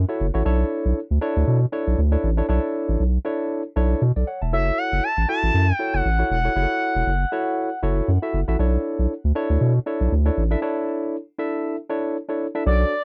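Dry and close, this short cut from a longer early-eighties boogie funk track has the intimate, upfront feel of a 1970s-style studio with barely any room sound. A deep, thick sub bass with a saturated edge and a fast attack anchors the groove, its sustained notes sitting low and heavy. Over it, a bright, barky tine electric piano, lightly overdriven through a combo amp, carries the harmony from Bm11 to F#m7 and back to Bm11 with a swung sixteenth-note lilt that keeps the mood funky and danceable. At 4.5 seconds a smooth sawtooth lead slides in with expressive portamento, vibrato, chorus and tape echo, singing a short phrase high above before falling silent. A break begins at 10.6 seconds, and the lead briefly reappears at 12.7 seconds just as the passage is cut off.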